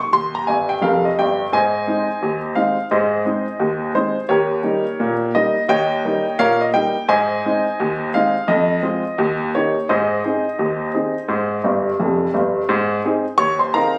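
Captured on a phone in a club with a moderate reverb, this lively, jaunty ragtime fragment in a swung 2/4 is cut from a longer piece. A solo upright piano sits up front with a woody, intimate tone, long sustain and audible action noise, ranging from F1 to Db6 over changes that move through Eb, Ab, Eb7, Fm and back to Ab. Short piano fills arrive at 0.5 and 11.6 seconds, and a new section begins at 12.7 seconds just before the clip ends at 14.0.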